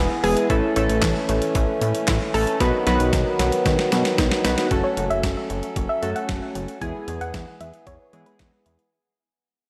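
A dreamy, reverb-soaked synth-pop excerpt with a cool, melancholic mood, where reedy harmonium chords and chorused analog keys sit over a fat, detuned analog bass and a thumpy, up-front 12-bit drum machine with handclaps, a very quiet unison pluck traces arpeggios throughout, a drum fill arrives at 2.6 seconds, and a soft, round, dark pluck with chorus and delay adds a second line from 4.8 seconds as the piece fades out.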